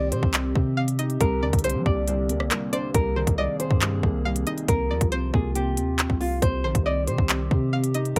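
A hard-clipped kick with crisp hats, handclaps and rim clicks drives this menacing, tense drill excerpt, its electronic kit sitting up front at 138 BPM in a half-time 4/4 feel in C minor, entering at 0.1 seconds over a deep, long 808-style bass with a fast attack and mellow decay. A small, fingerpicked nylon-string guitar carries the melody through low-pass filtering and delay, joined by a twangy, bright resonator pluck with chorus and delay as a second line, while a felt-muted upright piano adds dark, boxy accompaniment with audible action noise. Behind them a warbling, nostalgic tape-like pad holds sustained chords with chorus and its own reverb, over a progression that moves from Cm through Gm/C, Absus2/C and Bbsus2/C before returning to Cm at 6.4 seconds, in an otherwise dry mix.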